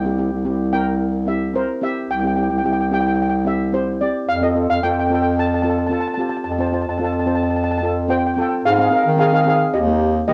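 A straight, bouncy 4/4 calypso groove carries this carefree excerpt, with a mellow, shimmering steel pan (double seconds, played with soft rubber sticks) singing the melody up front while a second, darker and smoother pan with a cassette-tape colour fills in the accompaniment underneath. A soft-attack bass clarinet, played in a classical style and sitting present and forward, anchors the low end throughout. The harmony moves from C to F before shifting at 8.6 seconds to a brief new section on Ab and Eb, all captured as a home cassette recording in a snug booth ambience.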